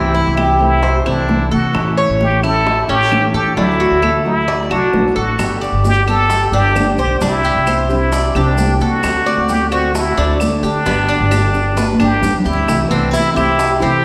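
A plunger-muted trumpet leads this relaxed Cuban son and guajira excerpt, its brilliant, wah-wah tone carrying the jazz-style solo melody up front with vibrato and scooped notes. Underneath, at a straight 132 BPM in 4/4, a fingerpicked dreadnought steel-string guitar gives full-bodied accompaniment while the Cuban tres spins metallic arpeggios on its doubled strings, some octave-doubled. A growly, thumpy pizzicato upright bass sits prominently in the mix, woody and dark on steel strings. Soft-handed bongos and bright, high-tuned congas keep to the background, joined by close, woody claves, and grainy, mellow maracas come in at 5.4 seconds. The chords move from C6 through Dadd9, Gadd9, D7 and G, and during a drum fill a small nylon-string guitar adds a second line from 12.0 seconds as the music heads back to C6. A lush concert-hall reverb gives the whole performance a spacious, churchlike bloom.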